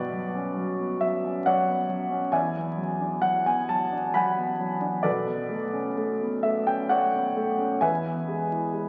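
This short fragment, cut from a longer piece, sounds like a very old 78 rpm record: vinyl crackle sits under the music, the top end rolls off above 7.8 kHz, and a wet concert hall reverb with a 2.4-second decay surrounds the playing. Within that hazy frame, a grand piano plays alone from start to finish in a dreamy, luminous impressionist classical style, moving in a slow 3/4 at around 66 BPM with a flexible rubato feel. The instrument is warm and up front, with a present tone and long sustain, and it spans a range from B1 up to B5. The harmony drifts from Bmadd9 to E9 at 2.3 seconds, then to Bm9 at 5.1 seconds, before settling on E just before the fragment ends at 8.9 seconds.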